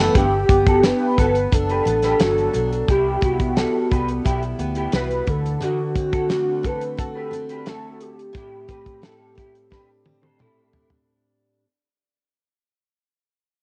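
Indie bedroom pop with a laid-back, dreamy feel, this cassette-hazed excerpt sets a velvety, detuned synth lead with vibrato over a dark, jumbo picked acoustic guitar in lush, warbly chorus, a round, foam-muted fingered bass that drops out at 5.5 s, a slightly broken-up electric guitar line through chorus and analog delay, and a dry, up-front 70s drum kit with a fat snare whose fill from 9.7 s closes a passage that fades throughout over Gmaj7, Cmaj7, D7 and Am7 in a small, lightly reverberant room.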